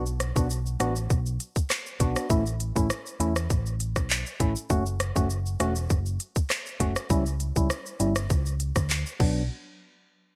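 A hollow, percussive organ stab with a fast attack, a dark edge and chorus carries this bouncy, sultry dancehall excerpt, with a filter sweep running across it for the full 9.5 seconds over a Bm, A, F#m, C#dim progression. Beneath it sit a round, punchy hollow-body electric bass and a tight electronic island pop kit of kick, rim click, handclaps, smooth hi-hat, shaker and crash cymbal bathed in gated reverb, all three parts up front. Light reverb and bright 1980s-style digital production give the short clip its polished sheen.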